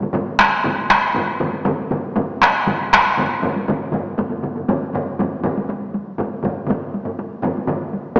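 A compressed, saturated taiko ensemble struck with heavy sticks leads this short Japanese traditional drum piece, standing up front and loudest in the mix. A second taiko ensemble, also played with heavy sticks, sits up front too, carrying the acoustic character of a live room. A third taiko ensemble, struck with hard sticks and miked close, sits lower in the blend. The mood is powerful and driving, moving at 120 BPM in a straight 4/4, with all three groups drumming together throughout the 8.2 seconds of this cut from a longer work. A lush scoring-stage reverb with a 1.9-second tail surrounds the performance, while the overall sound has a boxy, small-speaker quality.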